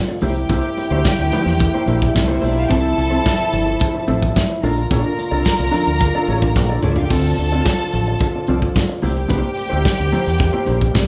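A straight 4/4 disco groove at 109 BPM drives this glamorous, danceable clip cut from a longer piece, with a punchy kick, medium-tuned snare, hi-hat, handclaps, toms and crash from an up-front studio drum kit, including a fill from 6.6 to 7.1 seconds. Underneath, a deep, round fingered electric bass sits dark and direct, while congas ring high-tuned and very quiet and a jingly tambourine stays dry in the background. A mellow French horn section holds sustained chords with light vibrato in a classical style, and a clean, compressed electric guitar with a vibrato effect fills out the accompaniment in a dark tone. A lush, bowed string section carries a focused second line. The harmony moves through C7, Fmaj7, Bbmaj7 and Dm7 before returning to C7, all heard as a band playing live in one room with a moderate large studio reverb.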